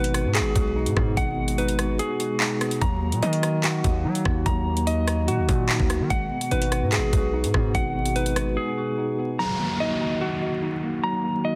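Drill hip hop in a half-time feel, dark and menacing, with a clean, compressed electric guitar playing arpeggios up front through a low-pass filter and tape echo, over a mellow tine electric piano and a hollow, flute-like pad held in the background. A distorted, heavy 808-style bass and an electronic drum kit of knocking kick, metallic hats, handclaps and rim clicks drive the groove, with the kick dropping out from 2.0 to 2.8 seconds and the bass and drums breaking off around 8.6 seconds. A downlifter sweeps in at 9.4 seconds as the keys, pad and guitar carry on, all under a dense, heavily limited master dusted with vinyl crackle.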